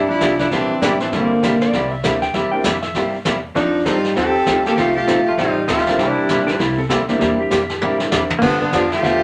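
A down-home, swinging western swing piece at 197 BPM in C mixolydian opens with an up-front, fingerpicked pedal steel carrying the melody with volume swells and slide, over a biting, airy-bowed fiddle line in the background, a dark hollow-body archtop guitar and a woody, thumpy upright bass. A vintage brush kit with dark cymbals joins at 0.2 s, followed by a bright, brilliant upright piano at 0.8 s and a clean lap steel adding a second slide line at 1.6 s and again at 6.5 s. A drum fill arrives at 7.8 s, all in a wet studio ambience.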